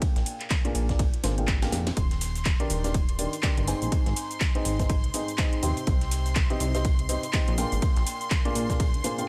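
A woody, slightly detuned upright piano riff pumps through a low-pass filter and tape echo over a punchy electronic kick, funky sawtooth-and-square analog bass with tube saturation, cracking house snares with metallic hats and handclaps, and a gritty sampler-style breakbeat kit in the background, carrying this uplifting, euphoric piano house excerpt, while a drum fill at 1.5 seconds ushers in a biting, close violin section holding sustained chords from 2.0 seconds over a Bb7, Ebmaj7, Ab and Cm progression in a dry room.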